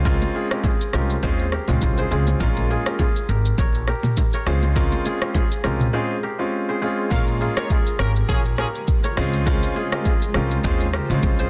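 A clear grand piano with audible action noise, a crisp fingerpicked kora riff through digital delay, and a woody, thumpy pizzicato upright bass open this sultry, hypnotic afrobeats groove at 102 BPM. They are joined at once by a produced afro-pop kit with a deep kick, metallic hats and a softly clipped snare, plus very quiet saturated congas and bongos that drop out at 5.5 seconds. The harmony moves between Dbmaj7 and Bbm7, and at 7.1 seconds a horn section with light vibrato and a smooth top plays a brief second line as a very quiet, blurred granular pad of detuned sustained chords drifts in beneath it, all within a dry, dense, heavily limited master that keeps piano, bass and drums up front.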